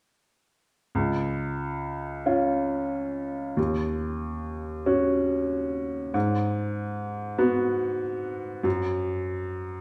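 A woody, boxy upright piano sits up front in a large studio room, its clear tone wrapped in a wet reverb that lingers about 1.3 seconds. This short excerpt of neoclassical minimalist piano, cut from a longer piece, carries a tender, intimate mood. The solo piano plays from 0.9 to 9.8 seconds in a slow 6/8 at 46 BPM counted in dotted quarters, with a rubato feel that lets time breathe. Its range stays in the low and middle register, from C#2 up to F#4, and it is tuned slightly under standard pitch, at A4 = 439 Hz. The harmony moves through C#, D#m7 and G#m7 before settling on an open F#5 near 8.6 seconds.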